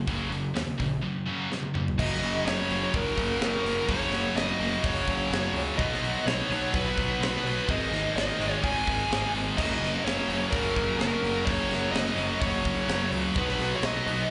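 A dark, distorted high-gain lead guitar carries the melody from 2.0 s, colored by slapback echo and digital delay, above a dark, heavy heavy-metal groove at 126 BPM in a straight 4/4. Two scooped, bright high-gain guitars pick the riff from the start, joined at 2.0 s by a tight, double-tracked distorted guitar in the background, while a growly, fuzz-laden picked bass and a tight acoustic drum kit with bright cymbals, a high-tuned snare and a big-room sound drive the low end, with a drum fill at 1.5 s. The cut from a longer piece sounds like a live gig heard through a club PA, bathed in club reverb and with a dulled top end.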